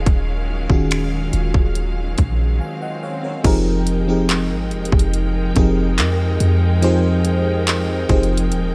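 An overdriven trap drum kit with gritty 12-bit sampler character sits up front, its hard-clipped kick, bright hi-hats, finger snaps, handclaps and crash cymbal driving this late-night, longing contemporary R&B excerpt, entering just after a deep, boomy 808-style bass with a clean sine tone that sounds from the very start. A dreamy FM electric piano layered with a soft pad and treated with chorus carries the chords, while a bowed studio string section adds smooth, vibrato-laden sustained harmony beneath. Around 2.6 seconds a brief break arrives with an electronic swell in the background, and at 3.4 seconds the harmony moves from Ebm11 to Fm11 in a dry, close-sounding mix.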